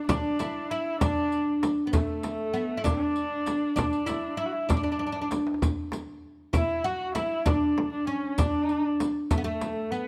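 Warm and passionate, this brief cut from a longer Persian modal ensemble piece moves at 65 BPM in a straight 6/8, set in D dastgah mahur with A4 tuned to 441 Hz. A deep, woody, plectrum-plucked fretless oud with double strings carries the melody up front, while a single bowed kamancheh, rich with vibrato and portamento, traces a second line in the same register. Beneath them a dry, close frame drum, a tight tombak played with soft hands in the background, and a band-limited, vintage-sounding riq with bright jingles keep the pulse, with a drum fill at 5.0 seconds, all captured by detailed close microphones in light reverb.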